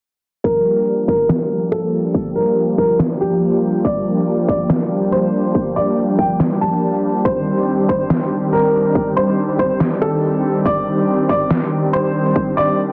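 Menacing and heavy, this short cut from a longer wobble dubstep track moves at 141 BPM in a half-time 4/4 feel, set in G minor with tuning at A4 = 439 Hz. A bright, worn grand piano carries the melody between G4 and A5, its short-sustain notes trailed by delay. Beneath it, a lush, detuned supersaw pad holds soft-attack sustained chords up front, pumping with sidechain as the harmony moves from Gm7 to Cmadd9 at 7.2 seconds. A punchy, layered electronic kick sits under a high-pass filter, while a deep, tape-warm snare enters at 1.3 seconds and stays up front. A filter sweep spans the whole passage, and moderate plate reverb with digital ambience frames a dense, heavily limited master.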